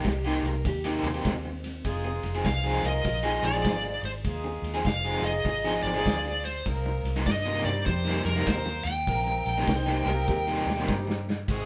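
A soulful, smoky electric blues shuffle in C minor at 100 BPM opens with a clean, slide-played lap steel in volume swells over an overdriven semi-hollow guitar riff with tremolo, a dark, foam-muted fingered bass and a small-room acoustic drum kit with a punchy kick and medium-tuned snare; a tight, distant horn section with octave doubling joins at 1.8 seconds, a smooth, up-front overdriven lead guitar carries the melody from 2.5 seconds, and the lap steel returns at 9.7 seconds before a closing drum fill, the band playing together in a stone room with moderate reverb.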